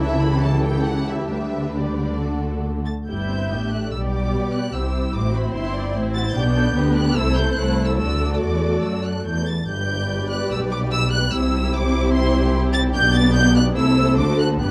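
In a rubato 4/4 at 132-151 BPM, this graceful, lively classical-period movement for string orchestra in G major is cut from a longer piece, with a brief opening passage giving way to a new section at 3.1 seconds that circles through G, C and D harmonies. A lush first violin section carries the soft-attacked, expressive melody high above a darker, more distant second violin line, while the close, even violas fill the middle. Cellos with portamento join the focused, up-front double basses in the bass, all under light reverb and a dark, warm production.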